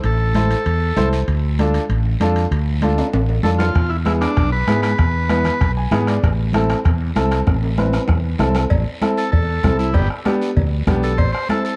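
A growly, punchy fretless electric bass sits up front with raspy guiro, bright thin-skinned congas and ringing timbales and cowbell from the start of this fiery, passionate cumbia excerpt at 194 BPM in A harmonic minor, as a buzzy overdriven combo organ and a brilliant, woody upright piano join, a soft-beater vintage bombo enters at 3.8 s after a drum fill, and the organ takes a solo from 8.7 s as the key settles into A minor over Am, G and back to Am, all in a dark production with light reverb.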